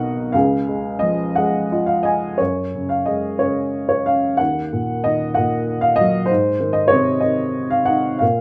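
A dark, woody upright piano carries this brief classical fragment alone, its slightly detuned, boxy tone placed up front in a moderate studio ambience. The mood is warm and peaceful, moving in a lyrical 6/8 at roughly 57-65 BPM counted in dotted quarters, with a rubato feel that lets the pulse breathe. Set in F# major and tuned to A4 = 438 Hz, the playing spans from B1 up to G#5. A short piano fill from 1.4 to 2.4 seconds leads into a new section, where the harmony moves through F#sus2, D#m and G#. Cut from a longer piece, the fragment closes at 8.4 seconds.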